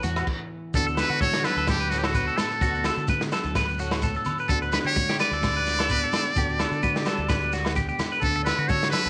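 Carefree and danceable, this short cut from a longer highlife guitar band piece rides a gently swung sixteenth-note feel in four. A brief stop in the band between 0.3 and 0.7 seconds clears the way for a metal-muted trumpet, which enters at 0.8 seconds to carry the melody up front: buzzy, breathy and intimate, with a soft attack, vibrato and a jazz-style solo voice. Beneath it, a fingerpicked nylon-string guitar adds classical accompaniment with audible finger squeak, while a bright, twangy clean electric guitar plays compressed, picked arpeggios through phaser and slapback echo. A deep, round and punchy fingered dub bass anchors the low end, and a gritty, saturated breakbeat kit with dark cymbals, a tight kick, rim clicks and a rolled-off top drives the groove. Congas with soft hands, a grainy, distant shekere and ringing agogo bells sit in the background. The harmony moves from A5 to D6 and then to Gmaj7/D, all within a light reverb.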